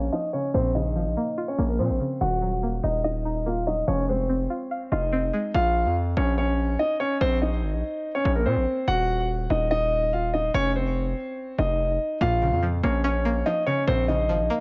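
A half-time 4/4 trap groove carries this melancholic, brooding hip hop excerpt, with a distorted, saturated 808-style bass sitting heavy and up front under a dark, mellow concert grand piano that plays the melody through a digital delay. A bright, twangy, string-like resonator pluck adds chorus- and phaser-treated accompaniment under a filter sweep until 5.5 seconds, drops out, then returns at 12.2 seconds as the harmony circles back to B-flat minor. The light studio reverb and low-pass filtered sound carry a faint mains hum.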